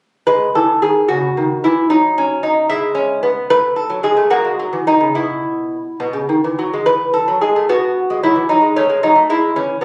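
A solo lute carries this short excerpt of a classical, baroque-style dance, its gut strings fingerpicked with a delicate, up-front presence that runs from 0.3 to 9.8 seconds. The doubled courses, some strung in octaves, give each note a shimmering, paired ring across a range from B2 to B4. The music moves in a lilting 6/8 with a rubato feel, and the mood is flowing and serene. Its harmony passes through moments of open, unaccompanied line between chords, settling back home near the close after a colourful F#m69. The sound comes from a phone placed in the room, with moderate reverb that lends the instrument a gentle club-like ambience around its warm tone.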